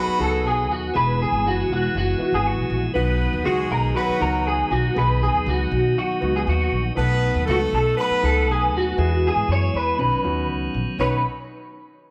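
A slightly broken-up, compressed electric guitar through a small old amp carries the melody up front with an ensemble chorus, over a tight horn section singing a second line with vibrato, piping, lightly overdriven tonewheel organ chords with key click, a woody pizzicato upright bass from 0.1 s and a polished baby grand piano accompaniment from 0.2 s, set in a moderate echo chamber for a warm, danceable stretch of soul cut from a longer piece.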